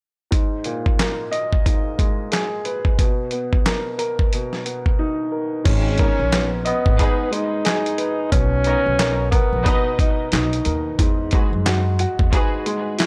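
A swung, thumpy kick and medium-tuned snare drive this gritty, dark boom-bap hip-hop cut, with hi-hat, handclaps and crash cymbal from a compressed, sampler-style soul kit re-recorded in a small room and set up front. A dusky upright piano, mellow and smooth with a vintage cassette-tape character, carries the chords throughout, moving through minor add9 and major seventh harmonies before settling on a major add9. After a brief silent gap from 5.0 to 5.7 seconds, a plucked upright bass with a growly, acoustic tone joins as a breathy tenor saxophone takes a short jazz-style solo, its scooped notes and vibrato treated with tape echo. Just after, at 6.0 seconds, a bright, lush bowed string section adds focused stabs in the background, also touched with tape echo. The whole excerpt has a dry, hardware-recorded sound with transformer saturation and a light studio reverb, and it is cut from a longer piece.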